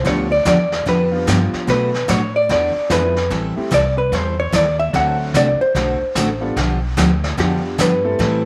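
This short cut from a longer western swing number opens straight into a solo on a vintage hollow-body jazz guitar, its dark, clean, compressed tone set up front with a slapback echo, in a swinging, down-home country mood. Beneath it, a bright, full-bodied dreadnought steel-string acoustic guitar is picked as accompaniment, while an intimate, polished upright piano with audible action noise and long sustain sits in the background. An upright bass, played pizzicato on gut strings, gives a thumpy low end. A vintage brush drum kit with a punchy kick, a medium-tuned snare and a rolled-off top supports the swung 4/4 feel. A moderate spring reverb colours the sound, and the chords move from G7 through Bm7, E7b9, Am7 and D7 before returning to G7 at 6.6 seconds.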